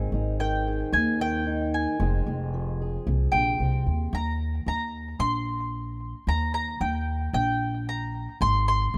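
Anthemic and warm, this indie folk excerpt moves at 112 BPM in a straight 4/4 in Eb major, tuned slightly low to A4 = 438 Hz, with an arrangement that builds. A fingerpicked old ladder-braced acoustic guitar opens the accompaniment with a boxy, dark tone from its aged strings, playing only until 4.1 seconds. Underneath, a pizzicato upright bass with gut strings sits up front, thumpy and woody, running through the whole clip. From 0.4 seconds a picked mandolin carries the melody high in its range, its doubled strings giving a round sound that also sits forward in the mix. The harmony moves from Ab to Fmadd9, then settles on Eb as a second section begins at 4.1 seconds before returning to Ab near the end. Light reverb and studio ambience frame the rough home demo mix, and the piece is cut from a longer work.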